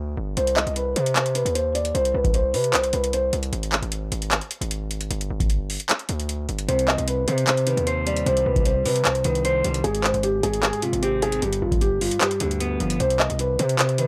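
Booming analog drum machine beats drive this dark, menacing trap cut at 152 BPM in a half-time 4/4 feel, with a deep kick, metallic hi-hats and handclaps that sit tape-warm and up front. Underneath, a distorted 808-style bass runs the whole way, heavy and aggressive, its saturated sine tone carrying a noise layer, a fast attack and a decaying tail. A felt-muted upright piano carries the melody in C harmonic minor, soft and intimate with audible action noise and a filtered, mellow edge; it enters with the drums at 0.4 seconds, drops out at 3.3 seconds for a break, and returns at 6.7 seconds. At that return a clean, fingered electric guitar joins in a shadowy, filtered accompaniment as the harmony moves from C minor through A-flat to G7, after the break hinted at a G5 power chord. The mix is dry and gritty, with little reverb and a raw hardware character, and the piece feels cut from a longer track.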